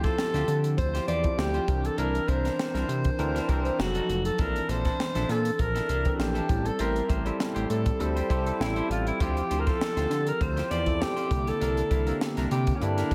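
Soaked in a dreamy plate reverb, this bittersweet, urban cut of polished 1980s jazz-funk pop sets a breathy, whispered alto saxophone melody with light vibrato over a barky, gritty tine electric piano through analog chorus, a clean semi-hollow guitar riff, a fat, detuned sawtooth bass with filter sweeps, and a crisp fusion kit with a punchy kick and high-tuned snare, all five playing for the full 13.1 seconds as the chords move from Dm11 through Bbmaj9#11 and back to C9.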